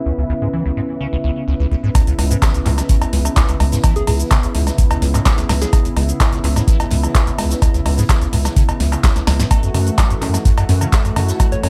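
Dry and echo-heavy, this trippy, driving acid house excerpt in C# minor at 127 BPM opens with a detuned sawtooth pad holding a C#m7 chord, a lo-fi, nostalgic tape-like pad warbling behind it, and a squelchy, resonant acid bass riff with phaser and overdrive filtering in the background, all pumping against the sidechain. At 1.9 seconds the drop lands with a deep, up-front electronic kick, a tape-echoed analog drum machine of punchy snare, handclaps, metallic hats, cabasa and cowbell, a very quiet acoustic kit adding high-tuned snare and hi-hat, and, just after, a round, wave-folded analog bass. Between 4.0 and 6.0 seconds a gentle, keys-like FM lead drifts in with dub echo before the harmony shifts to F#m7.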